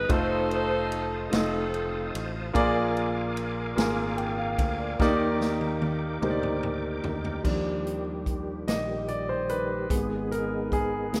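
An intimate concert grand piano, rich in deep bass with audible action noise and long sustain, carries this uplifting, soulful slow gospel excerpt in 6/8 at 49 BPM in Eb major, taking a polished solo from 7.4 seconds after a drum fill. A smooth-topped jazz saxophone section states the melody in the first 2.5 seconds, while a reedy tonewheel organ with key click, slow rotary speaker and chorus vibrato holds chords through F7, Bb7, Ebmaj7 and Abm over growly fingered electric bass. A swinging big-band kit with a punchy kick and medium-tuned snare sits up front in a lush hall reverb, giving the whole a rough home demo feel.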